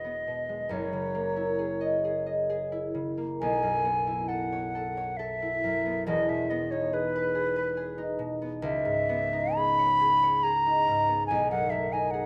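A wooden flute with an airy, straight, tongued tone and softened highs sings a pastoral, luminous melody up front over a ringing, fingerpicked concert harp in this short impressionist classical excerpt in E lydian, moving at a gentle, rubato 68 BPM in 3/4 through lush extended chords such as Eadd9, F#13 and Emaj7, all set in a moderate recital hall reverb captured by close, detailed microphones.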